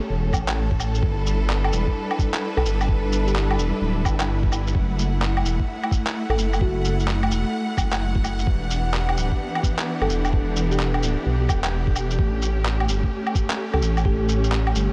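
A dreamy mix soaked in a huge ambient reverb frames this wistful, nocturnal future garage passage at 129 BPM, with a swung 16th-note feel in E dorian. Distant, lush symphonic strings hold clear, vibrato-laden chords and a deep, rumbling detuned saw bass sits up front, both pumping with sidechain, beneath a muffled, thumpy electronic kick and tape-warm shaker, woodblock and handclaps. A sparkling, bell-like FM electric piano drifts in the background in two phrases beginning at 2.6 and 10.0 seconds, colored by chorus and tape echo, over chords moving from A through G6, F#m7 and Em7 to A7.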